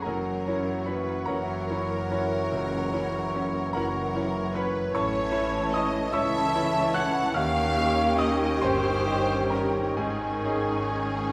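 Passionate and tragic, this short excerpt from a romantic movement for piano and orchestra unfolds in a slow, rubato 12/8, with the dotted-quarter pulse hovering around 43-51 BPM. An up-front baby grand carries the melody across a broad span from C#2 to F#6, its clear, intimate tone marked by audible action noise and long sustain. A rich, focused violin section shares the melody from a distance, while a smooth, even second violin section, a very quiet clarinet, an oboe in the background and an airy, tongued flute section weave second lines around it. Beneath them, a very quiet viola section and a present bassoon supply accompaniment, a mellow French horn section holds soft sustained chords, and a distant trumpet adds gentle stabs, while cellos and a lush double bass section anchor the bass with vibrato. The harmony moves from F#7 through A and D#7 to a suspended G#sus4 at 10.0 seconds, leaving the phrase unresolved in the wet glow of a concert hall reverb.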